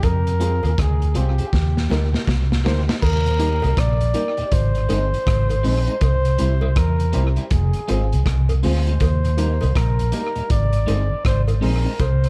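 Roots reggae with a serious, meditative mood, cut from a longer piece, where a warm flugelhorn with light vibrato and scooped notes carries the melody through dub echo over a round, foam-muted electric bass sitting up front and a crunchy, gritty breakbeat kit with dark cymbals and tape echo that plays a fill from 1.5 to 3.0 seconds. Behind them sit a mellow, flute-like tonewheel organ with key click, a slightly broken-up electric guitar treated with ensemble chorus and dub echo, and woody, boxy upright piano stabs, while cowbell, jawbone-type rattle, maracas and group handclap add a faint layer of percussion. The small room and dark production keep the sound close and shadowy as the chords move from Fm through Eb, Ab and C.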